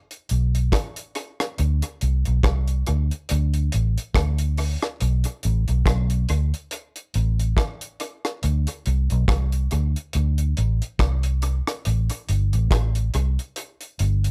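Barely any reverb surrounds this short, close-sounding cut from a longer lovers rock reggae piece, which moves at a relaxed 70 BPM with a swung sixteenth-note feel and a longing, bittersweet mood. An acoustic drum kit enters at 0.1 seconds with hi-hat, rim click and a tight kick, its dry, up-front sound touched by tape echo. At 0.3 seconds a vintage, foam-muted fingered electric bass joins, dark, round and punchy through its amp, sitting low between G1 and D2.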